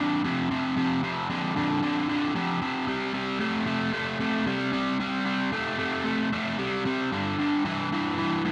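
A double-tracked, overdriven electric guitar plays alone and up front through this gritty, swaggering rock fragment cut from a longer piece, moving at 113 BPM in a straight 4/4 in C major with picked power chords of F5, then C5 at 2.9 s and G5 at 7.1 s, its sound coloured by spring reverb and tape echo within a light room reverb.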